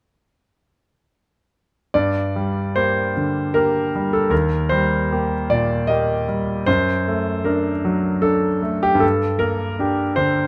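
A romantic classical character piece for solo piano in G minor, brooding and passionate, this short excerpt moves in a rubato 3/4 at 76 BPM as a brilliant, up-front concert grand with deep bass plays alone from 1.9 to 10.5 seconds, ranging from Eb2 to Eb5 through a progression of Gm, Eb, D/F# and back to Gm, captured by close, detailed microphones in light reverb.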